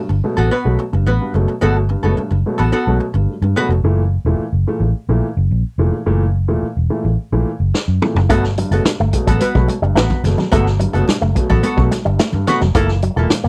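Funky and hypnotic, this straight-feel funk passage in 4/4 is cut from a longer piece and has the dry, close sound of a 1970s-style studio. A dark, woody upright piano plays mellow stabs from the start, while a round, foam-muted fingered electric bass sits up front and carries the low end throughout. A hollow-body archtop guitar, clean and picked with wah, adds accompaniment, dropping out at 3.8 seconds before returning at 8.3 seconds. The vintage drum kit enters at 7.7 seconds with a fill, bringing a punchy kick, a medium-tuned snare, hi-hat and toms with a rolled-off top. From 8.3 seconds a bright, twangy electric guitar with an envelope filter and spring reverb picks out a scooped riff, joined by very quiet, thin-skinned congas, as the harmony moves between Gmaj9 and F#7#9.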